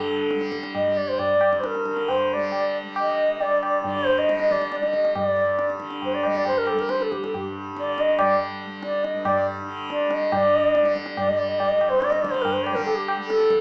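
An airy, mellow bamboo bansuri with vibrato sits up front over a shimmering, buzzing tanpura drone from the opening moment, joined at 0.3 s by low-tuned, dry tabla, as this meditative, longing Hindustani classical fragment in three quickens throughout, played live in one room with moderate large-studio reverb and heard through a small speaker.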